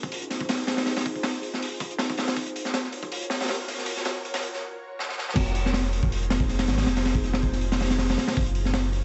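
Drum and bass with a jungle edge at 160 BPM in F phrygian, this frenetic, atmospheric fragment pairs an ethereal, airy pad of detuned chorused chords and 12-bit sampler grit, swept by a filter through the build-up, with an up-front, crunchy breakbeat kit of tight kick, high-tuned snare and dark cymbals, whose fill at 5.0 s leads into the drop at 5.4 s, where a thick, saturated sub bass enters beneath Fm7 and Gbmaj7 harmony, all set in a studio reverb dusted with vinyl crackle.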